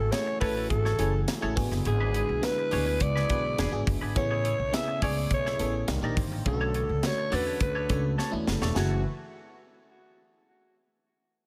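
Bittersweet and slick, this short cut from a longer polished 1980s jazz-funk pop track moves in a straight 4/4 feel. A breathy, raspy alto saxophone carries the melody with vibrato and a smooth top, while a glassy, bell-like FM electric piano with subtle chorus fills out the accompaniment. Underneath, a woody pizzicato upright bass sits up front, and a shimmering, retro pulse-width pad holds sustained chords in the background. A clean, compressed semi-hollow electric guitar plays a riff through lush chorus, and a crisp fusion drum kit with a high-tuned snare, tight kick, hi-hat and splash cymbal brings an airy studio-room polish, ending the first section with a drum fill from 8.2 to 8.8 seconds. The harmony moves from F#m7 through E7, Amaj7, Cm9 and Bm9 before returning to F#m7 as a new section begins at 8.8 seconds, framed by a small room reverb.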